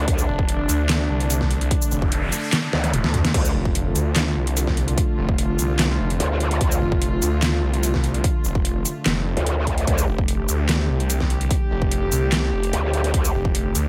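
Half-time at 147 BPM in 4/4, this chaotic, menacing heavy wobble dubstep excerpt in D minor sets punchy overdriven electronic kick and a dubstep drum kit with deep snare, metallic hats, handclaps, shaker, toms and crash beneath a snarling detuned sawtooth bass, short up-front bursts of bright, formant-filtered growl bass, a background noise sweep from 1.9 s leading into a drum fill at 2.7 s, and gut-string chamber strings holding sustained chords through sidechain pumping and a low-pass filter in a digital ambience.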